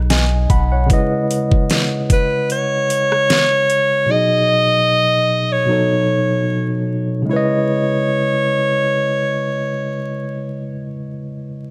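A softly attacked, subtoned alto saxophone carries a longing, jazz-style solo from 2.1 s in this moody, gently swung contemporary R&B piece, over a clean tine electric piano, a deep, mellow 808-style bass heard only in the opening moment, and an electronic drum kit with knocking kick, deep snare and metallic hats that drops out at 3.9 s, set in light reverb with vinyl crackle.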